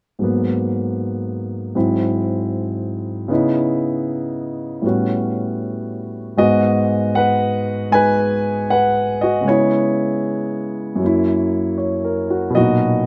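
A concert grand piano, up front with a deep bass and a slapback echo, plays late-night, smoky solo jazz with a swung feel in 4/4, moving through minor-ninth, minor-seventh and dominant harmonies before arriving on a major-seventh chord at 12.6 seconds, heard dry in an open-air setting as a short cut from a longer piece.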